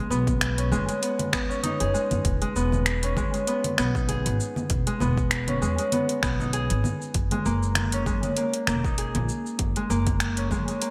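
A ringing, fingerpicked Celtic harp opens this hypnotic, mystical organic downtempo excerpt at 98 BPM in 4/4 with a light 16th-note swing, its arpeggios up front and carrying a digital delay over G#m7, Emaj7 and then F# at 7.1 seconds. A woody pizzicato upright bass with sidechain pumping joins almost at once. An overdriven afro-pop kit of congas, finger snaps, shaker and metallic hi-hats sits forward in the mix, with a deep, overdriven electronic kick entering at 0.3 seconds, all set in a moderate plate reverb with bright 1980s-style digital production.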